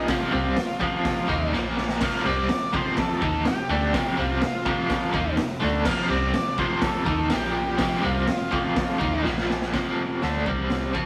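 Swaggering and raw, this garage rock excerpt struts at 124 BPM in a straight 4/4 with an F mixolydian flavor, caught in a rough rehearsal-room recording with a small room's moderate reverb. A dark, fuzzed octave-fuzz lead guitar carries a solo melody until 9.2 seconds over a bright, scooped, double-tracked overdriven guitar riff with tremolo, a round hollow-body short-scale bass, and a saturated, gritty drum kit with a punchy kick and medium-tuned snare. The drums throw in fills at 1.5 and 9.2 seconds, and the piece shifts to a new section at 9.7 seconds.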